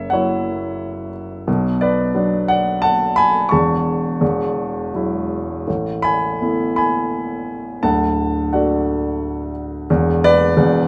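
Classical solo piano in A major, lyrical and rubato in 3/4 with uneven beats around 86 BPM, with a sunny, relaxed mood across this short excerpt cut from a longer piece. A dark, mellow grand piano sits up front, ranging from D1 to C#6 and moving through chords such as F#7, Bm, Eadd9, Asus2 and D before settling on Bmadd11/E at 9.9 seconds. Close, detailed microphones and light reverb capture the instrument, tuned to A4 = 444 Hz.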